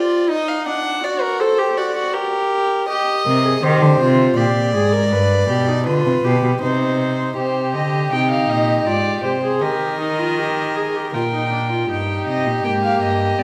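Solemn and serious, this excerpt from a baroque-style fugue for string quartet moves at 80 BPM in 3/4, starting in C minor and turning to Eb major at 7.4 seconds. A distant, reedy violin carries a second line over a viola accompaniment with light vibrato from the start, while a close, gut-string cello enters on the bass at 3.3 seconds. A nasal, up-front violin with an airy bow takes the melody from 7.4 seconds, all in the wet reverb of a recital hall.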